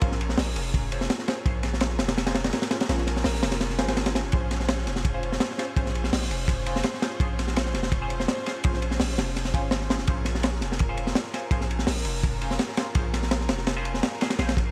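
A gritty, saturated breakbeat kit sits up front in this raw, dark jungle excerpt, its punchy kick, high-tuned snare and dusky cymbals rolling along under vinyl crackle in a small room, while a deep, sine-toned 808-style bass holds long notes beneath. Behind them, a woody bowed string section sustains a Bbm7 chord with light vibrato, and a nasal, band-passed sawtooth-and-triangle chord stab adds a filter sweep, phaser and dub echo. The short cut runs to 14.7 seconds.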